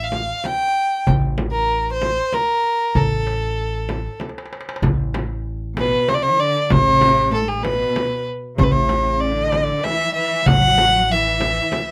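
A single bowed violin sits up front with a nasal, boxy tone and smooth, even vibrato, carrying the melody through this festive, stately Arabic maqam ensemble piece cut from a longer work. Beneath it, a pizzicato upright bass on gut strings gives a woody, thumpy low line, while a deep frame drum and a crisp metal-shell darbuka, both played with soft hands, keep a straight 3/4 pulse at 96 BPM. A drum fill leads into a new section at 4.8 seconds, where the mode shifts from A maqam kurd to A maqam rast. At 5.8 seconds a clear, focused cello section enters with a bowed, close-miked second line and its own vibrato. Light reverb surrounds the ensemble in a rough home demo mix.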